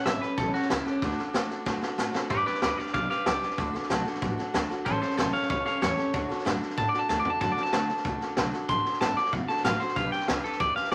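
A twangy, bright clean electric guitar carries the melody up front in this retro, rowdy rockabilly clip, picked high and cutting through a short slice of a longer piece. Beneath it, a full-bodied steel-string acoustic guitar picks accompaniment with audible finger squeak, while a woody, thumpy upright bass with gut strings plucks a dark low line. A vintage drum kit with a punchy kick, medium-tuned snare and rolled-off top drives the straight 4/4 at 188 BPM in D major. The harmony moves through A7, D and G, with a drum fill marking the shift into a new section at 2.3 seconds and another fill arriving around 7.1 seconds. Moderate studio reverb and a layer of vinyl crackle give the whole clip an old-record feel.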